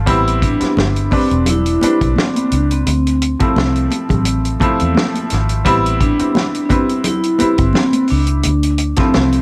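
A bright, intimate baby grand piano with audible action noise and a dark, round, foam-muted electric bass open this silky, bittersweet passage of lush 1970s-style soul, joined at once by an up-front drum kit with a fat snare, a tight kick and a rolled-off top. From 0.4 seconds a mellow soft-mallet vibraphone carries the melody with slow motor vibrato and a slapback echo, and from 0.8 seconds high-tuned, thin-skinned congas sit in the background of a lightly swung groove that moves between Am7 and Dm9. A small room adds a touch of reverb, and a faint mains hum lingers beneath this short section cut from a longer piece.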